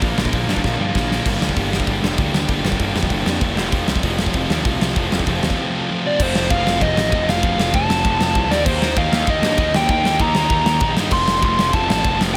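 A light reverb gives this short cut from a longer punk rock track a raw, urgent edge, with a big acoustic rock drum kit sitting up front in a bright stone room. At a straight 194 BPM in 4/4, the punchy kick, medium-tuned snare, hi-hat, ride and crash drive hard from the start, tossing in a quick fill at 0.6 seconds. Two distorted electric guitars play riffs in the background, one sludgy and overdriven, the other tight and picked. Beneath them, a fuzz-soaked picked bass, direct and amped, digs low through the Bb, Gm, F and Eb changes. At 6.1 seconds an overdriven lead guitar with a warm tone enters high above the riffs, carrying the melody to the end at 12.4 seconds.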